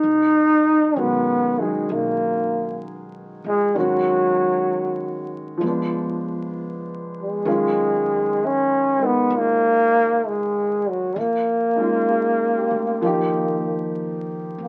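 A distant, roomy trombone carries the melody up front in this melancholic, intimate jazz ballad, its vibrato-laden tone sitting in a jazz style solo from the very start. The tempo is a slow 65 BPM in 4/4, with a swung eighth-note feel and tuning set slightly flat at A4 = 435 Hz. An upright piano joins at 1.0 seconds as accompaniment, boxy and woody with long sustain and audible action noise, placed close and present. Beneath them, a pizzicato upright bass with steel strings stays in the background, offering a low, acoustic foundation. The harmony drifts through rich colours, moving from Emaj9 through Db7b9 and Gbmaj9 before settling toward Ebadd9. Moderate studio reverb surrounds the playing, and the whole cut, taken from a longer piece, sounds like a very old 78 rpm record, complete with vinyl crackle.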